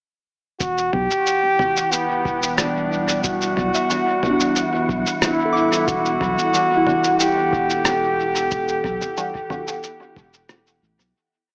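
A bright, distant trombone opens at 0.6 s with a motif-based solo melody over a round sub bass, a muffled thumpy kick and a sparse, echoing lo-fi kit of rim clicks, shaker and low toms, before a warbling, nostalgic pad and a breathy, wind-like high noise layer drift in, followed by a pure FM bell arpeggio from 3.7 s and very quiet, nasal filtered chord stabs, all settling into a spacious, meditative ambient dub piece with an echo-heavy, small-speaker sound that fades out from 7.6 s.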